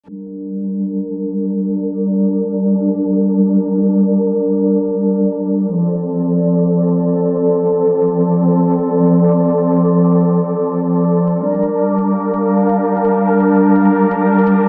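Half-time drum and bass with a dark, heavy mood, built on an up-front, woody string section sustaining bowed sul tasto chords with vibrato and vintage 12-bit sampler grit, a reversed, granular swelling texture glowing in the background with its own reverb, and a very quiet, overdriven electronic hi-hat, all set in a dreamy, reverb-soaked hall under a filter sweep as the harmony moves from Gm to F at 5.8 seconds and back to Gm at 11.4 seconds.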